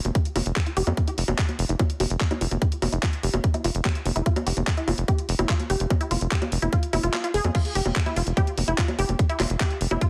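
A driving 146 BPM straight 4/4 pulse from an up-front tight electronic kick and a garage kit of bongos, handclaps, bright hi-hat and crash anchors this hypnotic psychedelic trance cut in F harmonic minor, where a punchy sawtooth sequencer bass sits low beneath a lush detuned unison pluck riff with sidechain pumping and dub echo, a filter sweep moving over the arpeggio until the kick drops out at 7.1 seconds and the drop lands at 7.5 seconds, all in a heavily compressed, radio-like digital ambience.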